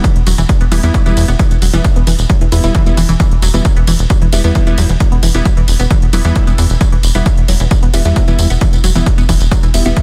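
A punchy, layered electronic kick sits up front in this intense, hypnotic stretch of driving peak-time techno at 133 BPM in E minor, with a tight sawtooth-and-square sequencer bass entering at 0.2 s, saturated yet mellow and pumping under the sidechain. Over a held E minor chord, a lush, detuned unison pluck with a noise layer and a moving notch repeats its riff through dub echo, while crisp digital wavetable chord stabs ring through a digital delay. A tape-toned techno kit of smooth hi-hats, ride cymbal and tambourine pumps along in a dry, dense, heavily limited modern master.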